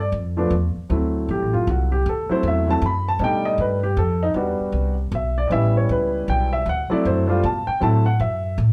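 A swung 3/4 lilt at 156 BPM drives this sophisticated, playful fragment of jazz piano trio in D mixolydian, tuned to A4 = 441 Hz. A warm upright piano, up front and touched with plate reverb, carries the melody as a solo from 0.0 to 8.7 seconds over harmony moving from G7(no3) and D9 through B7alt, Em7 and A9. Close beneath it, a thumpy pizzicato upright bass with steel strings and a woody tone anchors the low end, all set in a moderate club room heard from further back.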